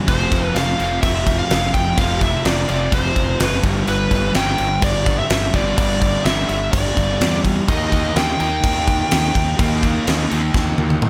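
An overdriven semi-hollow guitar opens this swaggering, anthemic hard rock passage, its double-tracked, picked riff carrying a hollow-body glow as it moves through F5, G5 and Eb chords. A moment later the full band is in at a straight 126 BPM in 4/4: a dark, picked lead guitar with overdrive sings a biting melody in its upper range, while a fingered electric bass adds a round, fuzzy growl beneath. The gated 80s drum kit sits up front and is the loudest part, with a punchy kick, fat snare, toms and bright crash cymbals ringing in an airy, polished stone-room sound. Light reverb gives the mix some space, and a drum fill from 10.5 seconds closes this brief section, cut from a longer piece.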